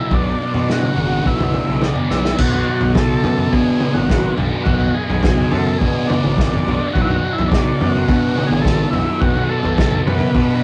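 Trippy and hypnotic, this short cut from a longer psychedelic rock piece moves at 106 BPM in B dorian over a Bm chord, with a buzzy combo organ singing the melody through heavy vibrato above a double-tracked thick fuzz guitar riff coloured by phaser, an overdriven, round fuzz picked electric bass, and an up-front vintage drum kit whose muffled, dark cymbals and tight kick sit in a small, lo-fi room, all captured as a rough rehearsal-room recording with light reverb, and a drum fill at 2.1 seconds leads into a new section at 2.4 seconds.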